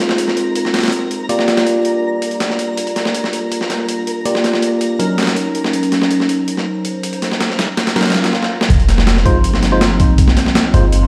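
Heard through a big sound system in a bare stone room, with vinyl crackle and a wet digital reverb, this dark, nostalgic drum and bass excerpt in F dorian moves at 162 BPM over Fm7, Gm7 and Ebm7 chords. A warbling, detuned tape-like pad with chorus holds sustained chords through a filter sweep, while a bright, clean tine electric piano plays stabs through dub echo, a faint twinkling granular texture shimmers in the background, and an up-front, gritty, compressed breakbeat kit with a thumpy kick keeps the pulse. A very quiet electronic swell at 8.2 seconds and a drum fill lead into the drop at 8.7 seconds, where a deep, boomy 808-style bass enters.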